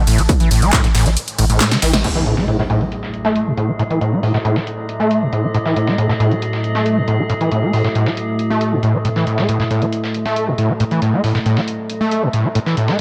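A driving 137 BPM pulse sets this intense, industrial peak-time techno excerpt in motion, opening on a drop where an overdriven electronic kick, a punchy techno kit with handclaps, crash and ride, and a thick saturated sub bass pump against a squelchy, resonant acid riff, before the kick drops out at 1.2 seconds and a drum fill leads to an accent. At 2.0 seconds an electronic impact lands, the sub and techno kit fall away, and the gritty sawtooth acid bass carries on with a filter sweep and tape echo, alongside a dusty, sampler-style kit of filtered hats and a fat snare that has been playing quietly underneath since the opening. From 2.8 seconds an eerie, metallic inharmonic drone, wave-folded and phased, rises up front in a moderate digital room.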